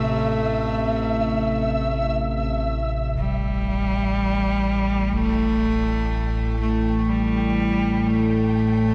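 In free time, this ominous, vast dark ambient drone excerpt in A minor, tuned to A4 = 442 Hz, places a biting, earthy bowed cello melody with light vibrato and diffuse delay up front over a nasal, chorused analog synth drone with an evolving, pulse-width-modulated sawtooth tone, while a grainy, flickering high texture fades in from 3.2 s and a very quiet, close concert bass drum sounds from 3.1 s to 5.3 s, the whole set within huge reverb and the warbling pitch drift of worn cassette tape.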